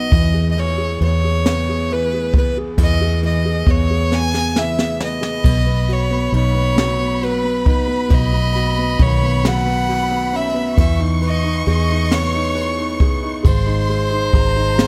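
In a swaying six-eight lilt, this heartfelt pop ballad excerpt sets an intense, vibrato-rich solo violin over a woody, slightly detuned upright piano, a round, foam-muted vintage electric bass and a small-room brush kit with dark cymbals and a boomy kick, whose fill from 4.1 to 5.4 seconds ushers in a lush, close studio violin section with tape echo at 5.4 seconds.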